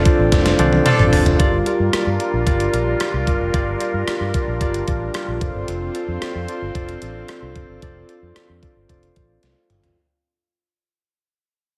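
1980s-style pop with a glossy, romantic mood, cut from a longer piece: an up-front, clean tine electric piano with medium tremolo plays the accompaniment over swirling, detuned phased analog pad chords, a dark, round muted fingered electric bass and a thumpy gated 80s digital drum machine with a gated reverb snare and fills from 0.3 and 9.4 seconds, while a distant, roomy horn section adds background stabs from 0.9 seconds, the whole in a dreamy mix soaked in plate reverb that fades out from 1.4 seconds.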